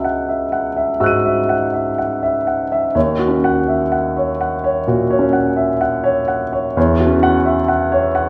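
A wet recital hall reverb with a 1.4-second decay surrounds this recording, and the listener seems to sit further back in the room, though the piano itself keeps an intimate, up-front presence. It is a short classical piece of impressionist solo piano, cut from a longer work, wistful and mysterious in mood, moving at a slow 63 BPM in 4/4 with a free, rubato feel. The warm concert grand is the only part, playing from 0.0 to 8.3 seconds across a range from C#2 to D#7, with deep bass, long sustain and a natural tone. The action noise of the instrument can be heard, which adds to its close, personal character. The harmony drifts from C#madd9 to D#m7 at 3.0 seconds and settles on Esus2 at 6.8 seconds, and the piano is tuned to A4 = 441 Hz.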